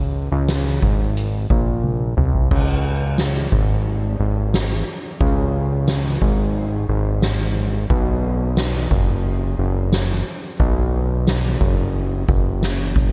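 A fat, thick analog bass opens this dream pop excerpt on its own, its detuned sawtooth tone carrying a filter sweep with a fast attack that decays, sitting up front in the low register between Gb1 and Db2. At 0.5 seconds a soft-mallet drum kit joins, its acoustic, natural sound placed in a hall, with mallets softening the drums and dark cymbals alike. The kit covers a full palette of kick, snare, toms, hi-hat, ride, crash and tambourine, with a boomy kick and a fat snare also sitting up front. A drum fill from 1.8 to 2.5 seconds marks the move into the next section, which carries on until the cut at 13.1 seconds. At a straight 89 BPM in 4/4, the pairing of warm bass and soft-mallet percussion gives an ethereal, floating mood in a dry overall mix.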